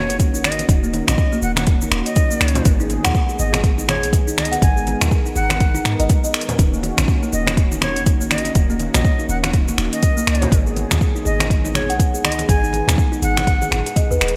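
A breathy jazz flute with a crisp, chiffy attack carries the melody over a smooth detuned analog pad, its chorus and 12-bit sampler grit sitting in the background, while a boomy 808-style bass pumps beneath them from the opening moment. This spiritual, hypnotic afro house fragment moves at 122 BPM with a swung 16th-note feel, cycling between Ebm7 and Abm as a woody, buzzing kalimba ripples through arpeggios with delay. An up-front deep electronic kick anchors a layered, overdriven deep house kit of finger snaps, metallic hi-hats and shaker, joined by thin-skinned, low-tuned congas in the background, all under light reverb and bright 1980s-style digital production.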